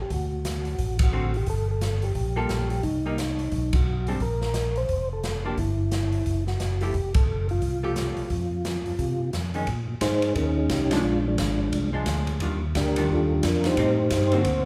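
A soft, flute-like tonewheel organ melody with second-harmonic percussion and chorus vibrato opens this greasy, soulful, swinging soul jazz organ trio excerpt over a fat, key-clicking organ bass line, both turning through a slow rotary speaker, as an airy, polished big-band drum kit with a punchy kick, medium-tuned snare, hi-hat and ride sits up front, and a dark, clean, picked hollow-body archtop guitar adds accompaniment from 1.1 seconds, the whole band playing live in one large studio room with ensemble accents at 1.0 and 3.7 seconds.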